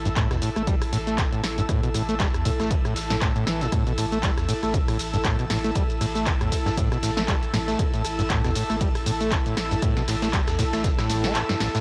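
Hypnotic and trippy, this acid house excerpt moves at 118 BPM in 4/4 with a 16th-note swing, cut from a longer piece and resting on an A5 chord throughout. An overdriven acid bass carries the riff, its squelchy, gritty sawtooth tone plucking through a resonant filter with analog delay, cassette tape saturation and sidechain pumping. Beneath it, a deep, round sine sub bass sits in the background, pumping along, while an airy, breathy pad with detuned layers, a noise layer, chorus and a slow attack adds a bright haze that also pumps and carries tape coloring. A punchy analog drum machine supplies handclaps, hi-hat, ride, rim click, shaker and snare, re-recorded in a large room, and an electronic kick, re-recorded in a small room, drives from 0.2 to 11.0 seconds. Very quietly behind them, a vintage brush kit adds dark cymbals and a medium-tuned snare with a rolled-off top. The mix is dry and lo-fi, a home recording on cassette.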